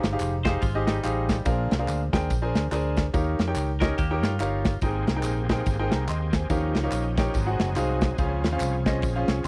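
A bright, brilliant concert grand piano opens this short excerpt from a longer uptempo gospel piece, joined from the start by a round, amped fingered electric bass and a punchy modern studio drum kit of kick, ride and medium-tuned snare, all sitting up front in a swung 4/4 at 143 BPM in Ab major. Tambourine and group handclaps sit low in the mix, adding close, acoustic shimmer to the groove. At 0.4 seconds a clean, picked semi-hollow electric guitar enters with a compressed second line, carrying on until 4.8 seconds, when a full, shouting tonewheel organ takes over in the background with sustained chords, lightly overdriven and colored by key click, chorus vibrato and a slow rotary speaker. The harmony moves through rich ninth chords, from Fm9 through Bb9 and Eb9 to Abmaj9, before settling toward Dbmaj7. The mood is soulful and hopeful, captured in a dry, close 1970s-style studio sound with small room ambience.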